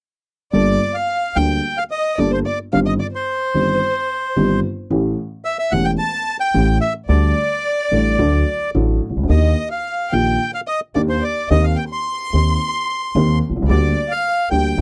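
Dramatic and sultry, this short tango excerpt in G minor moves at 110 BPM with a rubato feel, as a reedy, full bandoneon carries the melody up front while a single bowed violin adds an expressive second line with vibrato and portamento in the background, a dark, worn, slightly detuned upright piano supplies boxy accompaniment, and a woody pizzicato upright bass anchors the low end, all captured in a dry, close 1970s-style studio sound.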